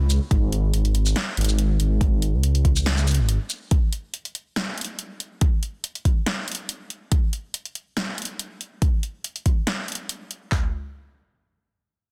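A half-time, lightly swung 4/4 groove drives this dark, cavernous deep dubstep excerpt, built from two layered electronic drum kits that carry hi-hat, shaker, snare, handclaps, toms, a deep kick and a punchy snare, all re-recorded in a small room and placed up front. A rumbling, saturated detuned sawtooth bass with a beating sine-like depth holds long, fast-attack low notes from the start until it stops at 3.4 seconds, leaving the drums to continue until a new section begins at 10.5 seconds. The dry, dense, heavily limited master keeps the sound close and heavy.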